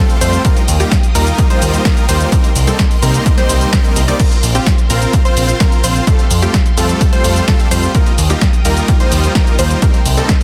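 Festival progressive house at 128 BPM in a straight 4/4, this anthemic, uplifting passage is cut from a longer piece and moves through Ebadd9, Cm7, Bbsus2 and Fadd9 before returning to Ebadd9 and Cm7. An overdriven electronic kick enters at 0.4 seconds and sits up front, punchy and layered, alongside a house kit of crash cymbal, tape-warm hi-hats, shaker and a punchy snare. A fat, nasal analog bass holds the low end with a sawtooth-and-square bite and a plucky filter edge, while a huge, thick supersaw carries the riff with detuned unison layers, a sub octave, vibrato and a bright compressed sheen. Underneath, a lush detuned pluck plays arpeggios with a noise layer, a moving notch and tape echo, and a distant, biting symphonic string section holds sustained chords roughened by vintage 12-bit sampler grit, both of these tucked into the background. Sidechain pumping breathes through the strings, pluck, supersaw and bass, and the whole mix sits in light digital reverb under a dense, heavily limited modern master.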